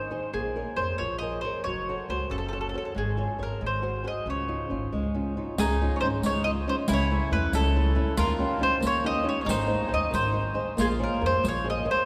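Sunny and lively, this Italian folk serenade in a straight 6/8 sets a mellow, round, up-front mandolin melody over woody fingerpicked flamenco guitar and a thumpy gut-string upright bass, with a bowl-back mandolin second line and a riq's bright jingles joining at 5.6 seconds, all bathed in the long, wet reverb of a cathedral-like hall.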